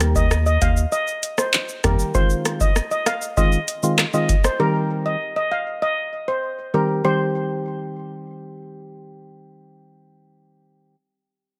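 A shimmering steel pan carries the melody from 0.2 s, its dry, close-miked tone trailed by digital delay over a hollow, percussive organ stab with chorus that runs to 11.0 s. This hypnotic, bouncy dancehall excerpt in C minor moves at 98 BPM over Eb, Fm7 and Cm chords. A round, wave-folded analog bass holds the low end only until 2.0 s, while a booming, overdriven drum machine with deep kick, metallic hats, handclaps, rim click and shaker drops out at 4.6 s, all with very little reverb.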